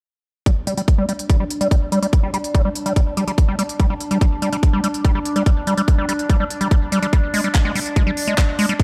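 A straight, driving pulse from a tight, up-front electronic kick and a garage kit of crisp hi-hats and handclaps, both starting at 0.5 seconds, anchors this alien psychedelic trance passage, where a squelchy, resonant square-wave acid bass riff carries a filter sweep, phaser and digital delay, and from 1.2 seconds a sawtooth-and-sine drone with moving overtones holds sustained chords through chorus, reverb, phaser and sidechain pumping, all within a dark, warm mix with light reverb.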